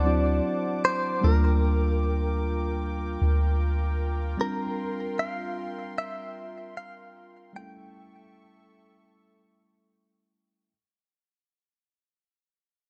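A late-night, sensual R&B fragment at 76 BPM in 4/4 with a light sixteenth-note swing opens with everything at once: a bright, twangy clean electric guitar carries the melody up front, a worn, slightly out-of-tune tine electric piano supplies mellow accompaniment, a smooth, detuned sawtooth pad holds sustained chords, and a deep, round 808-style bass sits beneath. The guitar is recorded direct, picked and compressed, colored by tremolo and digital delay, and ends at 9.9 seconds. The pad's slow attack and chorus lend it a warm, lush glow. The sine-like bass, dark and decaying on a single D, drops out at 4.4 seconds. The harmony moves from D7 through Gm7/D and C7sus4 to A7, all under light reverb. Cut from a longer piece, the whole passage fades out across its 10.7 seconds.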